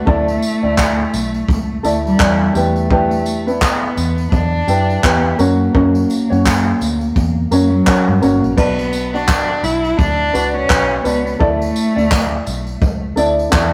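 A 4/4 groove with a swung sixteenth-note feel carries this short acoustic pop passage, reflective and wistful in mood and cut from a longer piece. A vintage brush kit sits up front with a tight kick, dark cymbals, handclaps, tambourine and a crash, while a separate bright, jingly tambourine rings faintly in the background from 0.3 seconds. Thumb-plucked ukulele gives a mellow, light accompaniment, and a foam-muted fingered electric bass adds a round, amped low end. A single bowed cello carries the melody with vibrato, soft attacks and expressive portamento, its smooth top coloured by tape echo until it stops at 12.8 seconds. The chords move from Dsus2 through Em7 and F# to Bm and back to Dsus2, and the rough rehearsal-room recording has a moderate stone-room reverb and a warm, saturated character.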